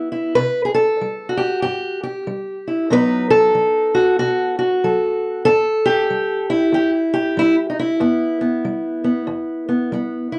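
A dark, boxy recording sits in a wet studio reverb, its top end rolled off so nothing bright cuts through. This short fragment of acoustic country blues, taken from a longer piece, sets a soulful, brooding mood with a swung lilt in four. A single fingerpicked steel-string parlour guitar carries it alone and up front for the full 10.4 seconds, ranging from its low E string up into the middle of its neck. The harmony moves from a C5 at 0.4 seconds to a B7 at 2.9 seconds before settling on E minor at 5.5 seconds. The tuning sits slightly below standard pitch.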